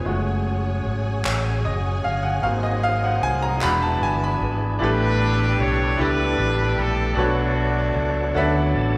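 Slow, uplifting gospel in 6/8 at 51 BPM, cut from a longer piece, in which a bright, brilliant baby grand piano takes a soulful solo up front over a gritty, overdriven tonewheel organ with slow rotary speaker and chorus vibrato in the background, intimate bowed strings, crisp distant handclaps and an amped, envelope-filtered fingered bass, until at 4.8 seconds the strings give way to a warm, roomy horn section carrying the melody and the organ adds a brief fill at 8.4 seconds, the whole set in a wet recital-hall reverb.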